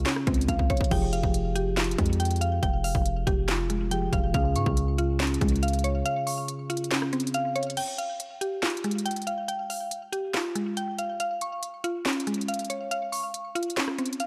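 A half-time trap groove of hard-clipped kick, sharp snare, crisp hats, handclaps and rim clicks drives this dark, eerie hip hop excerpt, where a woody, round FM synth pluck spins up-front arpeggios through chorus and digital delay over Dbmaj7 and Fmadd9 chords, a mellow, clean tine electric piano accompanies until 7.8 s, and a punchy, heavy sine 808 bass with a noise layer hits hard until 6.0 s, all in a light reverb.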